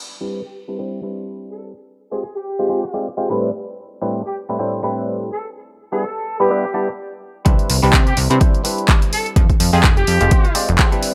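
A stringy, percussive clav played through a combo amp opens this sunny, funky filtered disco house excerpt with phaser and sidechain pumping, joined almost at once by a tight, vintage horn section with light vibrato and digital delay carrying the melody, both passing through a filter sweep over lush ninth and eleventh chords. After a short break, the drop at 7.5 seconds brings in a plucky sawtooth analog bass, an up-front overdriven kick re-recorded in a large room, and a punchy analog drum machine with handclaps and pumping hi-hats, all with a swung sixteenth-note feel in light reverb.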